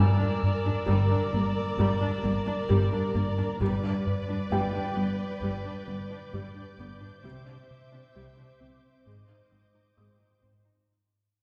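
A round, deep analog synth bass carries a sustained riff in this uneasy, mysterious suspense cue, while veiled con sordino strings gather around it: violins on a soft-edged melody and a second line beneath, violas in close accompaniment, cellos in the background and a very quiet, distant double bass section. High up, a faint violin texture and a mellow felt-muted upright piano, with its audible action noise, add a hushed layer as the harmony moves from Gm to G, then Cadd9 and Ab. The whole ensemble sits further back in a wet scoring-stage reverb and fades out across the roughly 11-second clip, cut from a longer piece.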